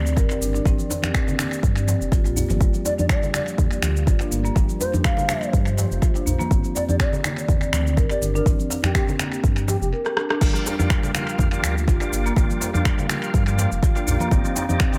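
A deep, tape-warm electronic kick drives this hypnotic afro house excerpt at 123 BPM in G minor, with a lightly swung deep house kit of cabasa, crash, finger snaps and rim clicks, plus a soft-handed djembe and thick-skinned, damped congas in the background. A rumbling detuned saw bass and a moody, phased analog pad pump beneath woody soft-mallet marimba arpeggios, while a breathy bamboo bass bansuri carries an expressive melody with vibrato from 2.9 to 9.9 seconds. After a drum fill, a percussive, lightly overdriven tonewheel organ with fast rotary speaker enters with stabs at 10.4 seconds, all set in an echo-heavy mix with small room ambience.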